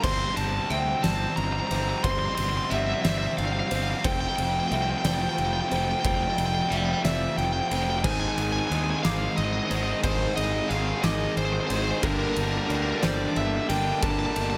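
An up-front, compressed overdriven electric guitar with tape echo carries the melody in this melancholic, cinematic post-rock passage in 6/8, over a raw, bright garage guitar riff, a growly fuzz bass, a boomy, gritty low-tuned drum kit with a fat snare and dark cymbals, a felt-muted upright piano's intimate, echoing arpeggios in the background, and very quiet, lush bowed strings holding dark chords, while a second distorted guitar riff joins at 8.0 s.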